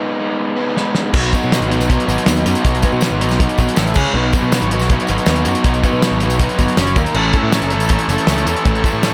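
Indie rock at 160 BPM in B major, this short excerpt from a longer piece feels wistful and carefree, driven by a straight 4/4 pulse. Two overdriven guitars open together on riffs: a semi-hollow guitar with a hollow-body tone, subtle chorus and slapback echo, alongside a raw, lo-fi garage guitar sitting up front. A cloth-damped, thuddy drum kit breaks in with a fill at 0.8 seconds, its fat snare, tight kick and dark, rolled-off cymbals giving a close, small-room weight, and a growly, bright picked electric bass joins at 1.1 seconds as the main section begins on B. A jingly tambourine sits in the background, while the harmony moves from G#m through B, with quick passing chords on A5, C#5, F#5 and D#5. At 7.2 seconds a very quiet, buzzy vintage combo organ adds sustained chords with heavy vibrato as the progression lands on A, all framed by light reverb and studio ambience.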